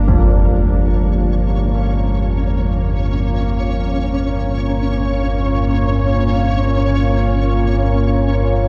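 A deep, rumbling drone and a moody dark pad on a B-flat minor chord open this cavernous, free-time dark ambient excerpt, both up front, the drone with lush chorus and the pad with chorus and shimmer reverb, while a flickering, grainy granular texture hovers quietly beneath. Old church bells with a bronze, clangorous ring and worn iron clapper sound arpeggios on F3 from 0.1 to 6.7 seconds through tape echo and shimmer reverb. The production is dark and warm, set in a huge ambient reverb with an 8.0-second decay.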